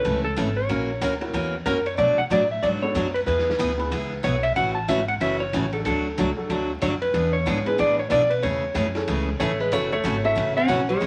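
Wrapped in a wet small-room reverb and vinyl crackle, this playful, down-home western swing excerpt in A major moves at a swung 186 BPM, with a dark, clean lap steel guitar carrying the melody up front over a bright, full-bodied picked dreadnought acoustic guitar, a woody, slightly detuned upright piano with audible action noise, a thumpy pizzicato upright bass and a muffled, lo-fi vintage drum kit of hi-hat, ride and snare in the background, while a clean, hollow-body archtop guitar joins on a second line at 9.4 s.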